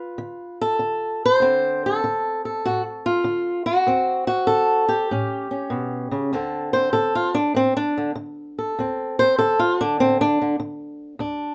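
A dark, woody fingerpicked steel-string acoustic guitar on old strings sits up front in this soulful, rollicking acoustic country blues fragment at 98 BPM in 4/4 with swung eighth notes, moving through G7, D7 and A7 chords in light reverb before stepping into a solo passage from 6.3 s to 11.5 s, its boxy tone ranging from D2 to C5.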